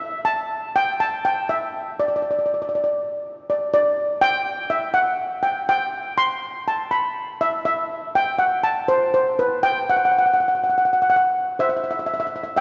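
Set in a long, wet church reverb that rings for about 3.3 seconds, this short calypso excerpt has a bouncy, sunny mood at 122 BPM in G major, with a light swing. A single lead steel pan, struck with soft rubber sticks and sitting up front, plays alone from 0.0 to 12.6 seconds across a range of B4 to C6. Its tone is shimmering yet mellow.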